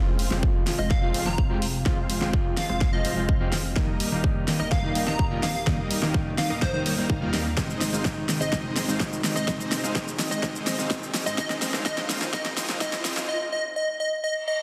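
Straight 4/4 drums, with a punchy, tape-warm electronic kick up front and a pop kit's fat snare, hi-hat and cabasa playing a fill, drive this anthemic, euphoric festival progressive house build-up, where a huge, detuned supersaw riff moves under a filter sweep with sidechain pumping and delay, a bright, catchy plucky unison lead enters at 0.8 s, a very quiet warbling vintage pad sustains its chords, and a deep saturated sub bass and a dark, slightly broken-up electric guitar sit in the background, inside a lush hall and a dense, heavily limited master, as a faint riser and reverse cymbal arrive at 10.1 s and the reverse cymbal lands at 14.4 s.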